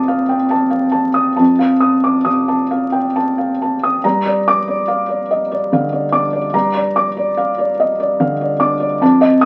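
Swaying in a rubato 6/8 at 45-49 BPM, this reflective, melancholic neoclassical minimalist excerpt in G minor sets a felt-muted upright piano alone, hushed, boxy and close with its action noise audible, ranging from F2 to Eb6, moving from an F7 chord to Gm7 at 4.0 seconds in a moderate studio reverb under the crackle of a very old 78 rpm record.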